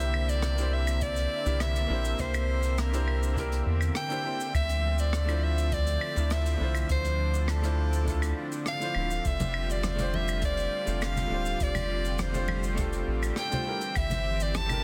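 A straight 4/4 pulse at 102 BPM, carried by brushed jazz kit with hi-hat, rim click, cabasa, claves and a softly clipped snare, plus a deep, tape-warm electronic kick in the background from 1.0 s and ringing, dry congas from 9.4 s, underpins this wistful, relaxed sunset chillout excerpt, where a round, dark analog bass sits up front, a clear grand piano with tape echo and a lush, warbling sawtooth pad with chorus move through C9, Dm9, F69 and Gm69, and a close-miked soprano saxophone leads with light vibrato, subtone, scooped notes and tape echo, all within a small-room ambience and a dense, heavily limited master.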